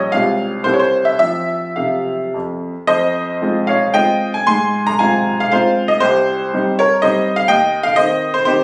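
This is a classical, romantic triple-time dance for solo piano, built on dotted rhythms and played with a rubato feel that gives it a rustic yet graceful character. A baby grand piano carries the whole piece alone from 0.0 to 8.6 seconds, ranging from deep bass notes up into the high treble register. Its tone is clear and natural, with a short sustain, and it sits up front in the mix. The harmony moves through F minor and C chords in the opening phrase, then shifts into a new section at 2.9 seconds that turns toward C minor. The piano rings in a wet stone room, with added studio reverb and compression over a phone recording made in the space, and the clip is cut from a longer piece.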